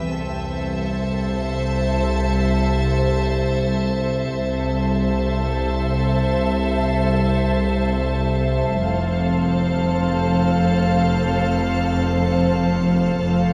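In free time, this eerie, uneasy suspense film cue, cut from a longer piece, lays veiled, con sordino violin sections carrying a melody and a second line over dark muted cello and double bass sections, a calm detuned organ-like drone with ensemble chorus, and an icy, crystalline glass pad with chorus holding sustained chords, all set in a moderate scoring stage reverb as the harmony moves from C6 to F at 8.8 seconds.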